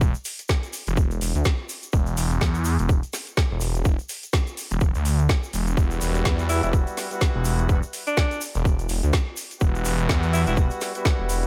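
A bouncy, aggressive bass house excerpt in E minor at 125 BPM with a 16th-note swing, built on a swirling, thick, detuned saw bass with phaser, tube saturation and sidechain pumping, a tight, overdriven electronic kick up front, a garage kit with woody snare and metallic hats, a grainy egg shaker in the background, distant horn stabs entering at 5.8 s through a low-pass filter and delay, and a punchy, vintage alto saxophone melody from 6.5 to 10.5 s over an Emadd9 chord.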